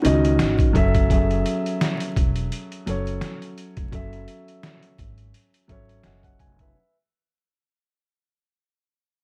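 A dark grand piano sits up front, its mellow, intimate tone carrying audible action noise and a vintage, cassette-tape character shaped by high- and low-pass filtering. This gritty, brooding boom-bap hip-hop fragment, cut from a longer piece, moves from Ebm7 to Gbm7 with a light sixteenth-note swing. Beneath the piano, a pizzicato upright bass with steel strings adds a woody, growly low end. A compressed, pitched-down sampler-style drum kit, also up front, brings a thumpy kick, a medium-tuned snare and hi-hat with a tape-warm grit. Light reverb and vinyl crackle surround the parts as the whole passage fades out over its 6.7 seconds.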